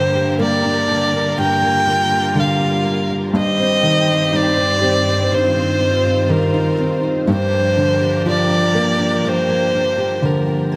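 Melancholic and emotional, this slow pop ballad excerpt in 4/4 moves from G minor to C minor over G, with a dark, woody solo violin singing the melody up front with vibrato. Beneath it, a warm concert grand piano with deep bass and audible action noise plays the accompaniment, while a fingerpicked steel-string acoustic guitar adds arpeggios touched with tape echo and finger squeak. A lush studio string section holds soft-attack sustained chords, bowed sul tasto with a smooth top, all in light reverb and studio ambience.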